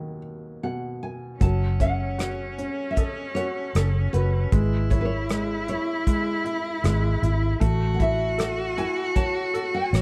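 This melancholic, intimate acoustic folk-pop ballad has a dark, warm production with light reverb, and it moves at 77 BPM in a straight 4/4. A fingerpicked nylon-string guitar carries the melody in a full-bodied, deep classical tone. Beneath it, a felt-muted upright piano plays a soft, mellow accompaniment, its thin felt, short sustain and audible action noise giving it a close, hushed character. At 1.4 s a soft brush drum kit enters up front, with a punchy kick, hi-hat and rim click in a small acoustic room, and a vintage, foam-muted fingered electric bass adds a round, amped low end. A single bright cello also comes in, playing a bowed second line with vibrato that sounds focused yet distant. The harmony opens on B/D# before moving through F#m and C#m/G# to A, in a passage cut from a longer piece.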